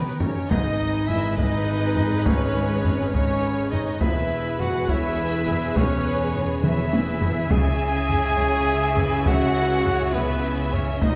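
A cinematic, epic orchestral film score in C# minor, this dark and dramatic passage moves at 68 BPM in a straight 6/8, cut from a longer piece. A bright, focused violin section carries the melody with lush vibrato, joined in the same range by a pure, metallic concert flute playing a second line in the background, while a second, more distant violin section adds an intense line of its own from 0.2 seconds. Beneath them, a very quiet string section and a dark, roomy French horn section hold sustained chords, a mellow solo trumpet punctuates with stabs, and a close viola section fills in the accompaniment. The low end rests on a smooth cello section and a distant double bass section. A taiko ensemble struck with hard sticks resounds in a large room, opening with a fill in the first half second and adding another around 6.6 seconds. The harmony moves from G#m to E at 4.0 seconds and settles on C#m at 7.5 seconds, all set in a moderate scoring-stage reverb.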